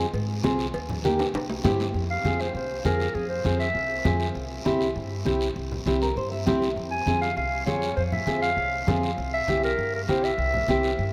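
A mellow, up-front solo clarinet carries the melody of this fiery, danceable cumbia excerpt in F harmonic minor at 199 BPM, entering at 2.1 s and returning later over a dark, fingerpicked classical nylon-string guitar that adds its own fill around 5.9 s. Woody pizzicato upright bass anchors the Fm, Eb and C chords, while soft-handed, low-tuned congas sit in the background beside a raspy guiro, and very quiet, ringing metal-shell cowbell and timbales appear only in the opening until 1.9 s, which closes with a drum fill. The whole mix is bathed in a wet cathedral reverb that places it in a vast, echoing space.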